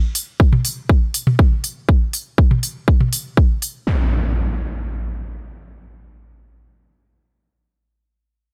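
Cinematic and dramatic, this short cut from a longer melodic techno piece moves at 121 BPM in a straight 4/4, opening with a layered, up-front house drum kit of crisp hats and toms alongside a punchy electronic kick. Around 3.9 seconds the drums give way to an electronic impact sound effect that holds the front of the mix until 7.6 seconds. The sound is dry, with little reverb, and has a bright 1980s-style digital sheen.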